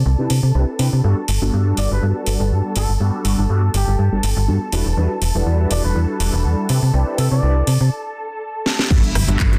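Filtered disco house at 122 BPM in G major, feel-good and funky with a light swing, where a snappy slap-like FM bass with a metallic attack and lush, bowed studio strings pump under a low-pass filter sweep, mellow chorused and phased synth brass fills in beside a house kit of cracking snare and metallic hats, a background trumpet section with 12-bit grit and digital delay carries the melody from 1.8 to 7.8 s over chords moving from Cmaj7 through Gmaj7 and Em9, and after a break a drum fill leads into a punchy up-front electronic kick and a very quiet impact at 8.9 s.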